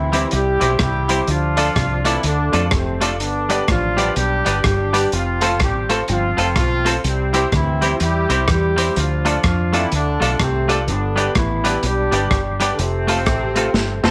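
A roomy horn section with vibrato carries the melody in this upbeat, cheerful ska excerpt at 125 BPM in C major with a swung feel, over a round, dark fingered dub bass, clean, picked hollow-body electric guitar, brilliant stabs from a worn, slightly detuned upright piano with audible action noise, and a crunchy, gritty breakbeat kit that plays a fill at 13.7 s, as the chords cycle through C, Dm, G and F beneath moderate spring reverb.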